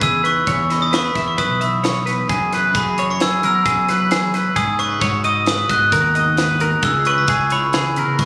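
Playful and bright, this 8.3-second excerpt of math rock and midwest emo moves at 132 BPM in a straight 5/4, rooted in E lydian as the chords step through Emaj7, F#9sus4, G#m9 and C#m7. A ringing, bell-like glockenspiel struck with brass mallets carries the melody with a vintage, band-limited tint, while an up-front, twangy twelve-string electric guitar spins arpeggios and a clean electric guitar with phaser sits in the background. Underneath, a growly fuzz bass with overdrive and a crisp fusion kit with a high-tuned snare and punchy kick drive the groove, all captured on a phone in the room with light studio reverb and compression.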